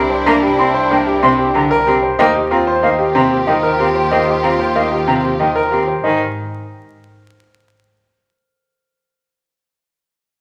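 Up front, a concert grand piano with deep bass and long sustain plays arpeggios in this bright, hypnotic minimalist classical pattern piece, cut from a longer work and moving at 187 BPM in a straight 6/4 in A-flat Lydian. Beneath it, a lush, focused string section holds sustained chords while a single distant cello, bowed with vibrato, supplies a rich, even accompaniment, and a smooth bowed double bass section anchors the low end. An airy, expressive flute enters at 0.3 seconds with tongued arpeggios in the background. A very quiet, fingerpicked concert harp carries the melody with a ringing tone, and after the other parts fall away around 6.2 seconds it continues alone until 8.0 seconds. The harmony moves from Cadd9 to Ebadd9 before settling on an open Abmaj7 chord. A large, wet studio reverb and a layer of vinyl crackle give the recording a slightly worn patina.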